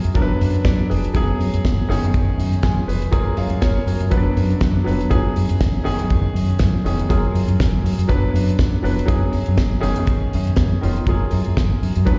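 A lightly swung sixteenth-note groove in four drives this celebratory, glamorous disco excerpt. A damped 70s drum kit sits up front with a fat snare, tight kick and hi-hat, its sound dry, dark and rolled-off, beside a round, deep fingered electric bass played direct and amped. A warm, intimate grand piano with audible action noise and slapback echo accompanies through a repeating cycle of Bm, C#7sus4, B6/9 and F#maj9 chords over F#, adding a brief fill from 2.4 to 3.1 seconds, while the band is heard live through the venue's PA in a small room with recital hall reverb and a muffled top end.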